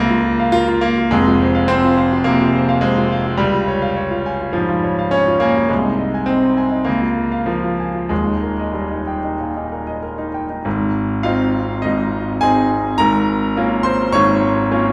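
A wet recital-hall reverb surrounds this recording, which is heard from further back in the room, yet the concert grand still sounds clear, present and up front, with the clatter of its action audible beneath the notes. It is a classical virtuoso piano study in 4/4, played with a heroic, sparkling character and a free, rubato feel. The solo piano spans the full 14.9 seconds, reaching from a deep, resonant Eb1 in the bass up to a glittering Db6, and its polished tone carries a long sustain that blooms into the hall. The harmony moves from Bbm/Db through Fm, Db, Ab/C and Bbm7/Db to a cadence on Eb near 8.1 seconds, before a new passage opens on Ab at 10.7 seconds and settles on Bbm7/Ab. Cut from a longer piece, it feels like an intimate glimpse into a bold, brilliant showpiece.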